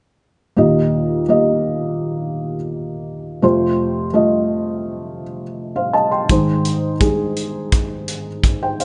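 Piano-driven pop in Eb major at 84 BPM, this brief cut from a longer piece feels anthemic and uplifting, built on a felt-muted upright piano whose thick, mellow, intimate, dark tone sits up front as it moves through Eb, F and Ab chords. A modern acoustic drum kit joins at 6.3 seconds with hi-hat and a tight kick, set in a pumping studio room. A moderate large studio reverb surrounds the recording, and the top end is rolled off above 10.3 kHz.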